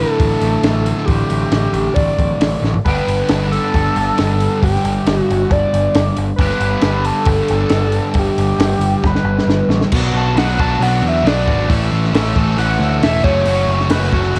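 A screaming, gritty synth lead with a guitar-like sawtooth and square-wave edge carries the melody of this carefree, wistful indie rock excerpt, its sustained notes colored by distortion, chorus, phaser and vibrato, before it takes over as a solo from 9.9 seconds. Beneath it, a bright, double-tracked fuzz guitar plays the riff up front, compressed and picked, with a cassette-tape grit to its distorted tone. A growling picked electric bass, overdriven and heard direct and amped, holds the low end. A compact cocktail drum kit, dark and smooth with a high-tuned snare, punchy kick and rolled-off top, joins at 0.2 seconds with crash, hi-hat and toms and plays a drum fill leading into the solo. The band moves at a straight 136 BPM in 4/4 over Dsus2/A and G, then shifts to Bm, A and F#m, all set in a light small-room reverb with the feel of a home cassette recording.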